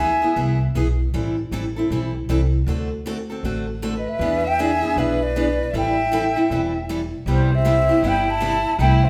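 A breathy, vibrato-laden concert flute carrying the melody and a smooth, soft-attack bowed violin with portamento on the second line sound together for the first 0.6 seconds over a bright, boxy, picked parlour acoustic guitar and a woody, thumpy pizzicato upright bass on gut strings, then return at 4.0 seconds in this virtuosic, bittersweet acoustic string-swing fragment in A minor at 157 BPM, cut from a longer piece, whose swung 4/4 groove moves through Am7, D7 and E7 toward Cmaj7 in a live, reverberant studio room with the guitar and bass up front.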